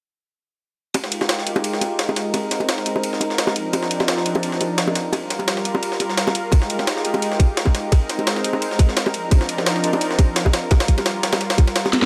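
A lush, thick unison pad sits up front, holding sustained chords built from detuned sawtooth and square waves with an airy noise layer, a soft attack and a bright chorus sheen, while sidechain pumping makes it breathe. Beneath it, this liquid drum and bass cut rolls through a cycle of Fm11, Bb9sus4, Cm11 and Gm7 with a gentle swing and a lush, rolling mood. Two drum kits run together: a layered, produced electronic kit with hi-hat and a cracking snare, and a gritty, sampler-style jungle kit, compressed and pitched up, with an overdriven ride, a high-tuned snare and high-pass filtering on both. Tight, high-tuned acoustic bongos played with soft hands sit close and dry in the background, treated with dub echo. A tight, up-front electronic kick enters at 6.5 seconds, adds weight to the groove and drops out at 11.7 seconds. The mix is echo-heavy with a light reverb, and the passage is cut from a longer piece.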